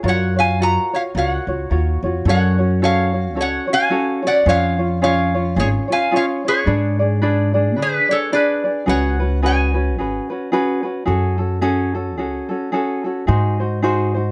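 Sunny and relaxed, this swung Hawaiian excerpt sets a metallic, nasal lap resonator guitar playing the slide melody with fingerpicks up front until 10.3 seconds, over a light, thumb-plucked tenor ukulele and a woody pizzicato upright bass on steel strings, all held in moderate studio reverb as the harmony turns from a bright major-seventh opening toward minor colours.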